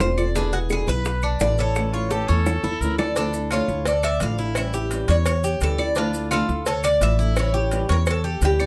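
Close, detailed microphones and light reverb frame this sultry excerpt of Cuban son and guajira in D harmonic minor at 171 BPM in straight 4/4, with a growly, pizzicato upright bass up front beneath a dark, thumb-plucked flamenco guitar. One picked Cuban tres carries the melody on metallic double strings while a second, brighter tres plays arpeggios, and tight, high-tuned bongos and cowbell sit ahead of grainy maracas and woody claves in the background. A punchy trumpet with vibrato adds a brief second line from 1.9 to 3.1 s, overlapping a drum fill, before the harmony settles into alternating Dmadd9 and A7 chords from 3.2 s.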